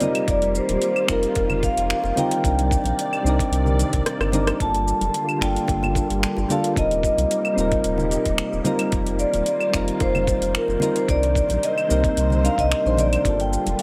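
Relaxed and warm, this sunset chillout excerpt moves in a straight 4/4 over a gentle cycle of Eb6, Cm9 and Gm7 chords. A close-miked vibraphone played with medium mallets carries the melody, its metallic, ringing tone shimmering with fast motor vibrato and trailed by tape echo. Beneath it, soft electric-piano-like synth keys give round, decaying accompaniment through chorus and tape echo, while a silky vintage string machine holds mellow sustained chords coloured by phaser and ensemble chorus. A deep house drum kit of claves, finger snaps, metallic overdriven hi-hat, rim click and shaker drives the groove, with hand-played congas and bongos sitting dry in the background. A deep, round sine sub bass and a gritty, thumpy electronic kick join at 0.3 seconds, and a short drum fill arrives at 4.1 seconds in the light reverb-washed mix.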